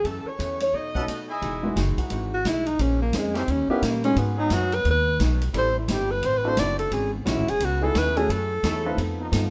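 Big band swing in a swinging, energetic mood, this short cut opens with a mellow, vibrato-rich saxophone section on the melody over woody pizzicato upright bass, a dark, clean archtop guitar in the background, and a drum kit with a punchy kick, medium-tuned snare, hi-hat and ride cymbal. At 1.0 s an intimate baby grand piano with audible action noise joins alongside brief trumpet section stabs, and from 2.0 s a tight trombone section holds sustained chords in the background. A clear, close-miked alto saxophone then takes the solo up front in jazz style, with light reverb and a colorful chord progression moving underneath.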